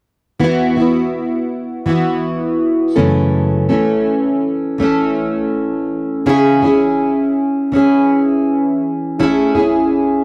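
A picked, plugged-in steel-string acoustic guitar, double-tracked, full-bodied and up front with jumbo depth and a touch of finger squeak, carries this tender, wistful pop excerpt at 82 BPM with a light 16th-note swing, moving through Esus2, F#m7, C#m and Amaj7 from 0.4 to 10.2 seconds in a dry, close 1970s-style studio sound with small room ambience.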